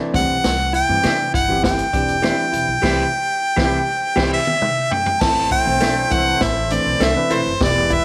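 A dark, woody upright piano opens this danceable, uptempo 1960s-style soul excerpt at 100 BPM. It is joined almost at once by a growly pizzicato upright bass, a punchy big-band drum kit, a clean hollow-body jazz guitar riff, and an up-front, close-miked harmonica carrying the melody with scooped notes and light vibrato. From 1.0 seconds, a slightly broken-up, lo-fi electric guitar adds stabs in the background. During a band accent that begins at 2.8 seconds, drum and piano fills arrive at 4.0 seconds. At 5.2 seconds the harmony shifts from C to A minor as a smooth-topped horn section enters with a loose second line under light reverb.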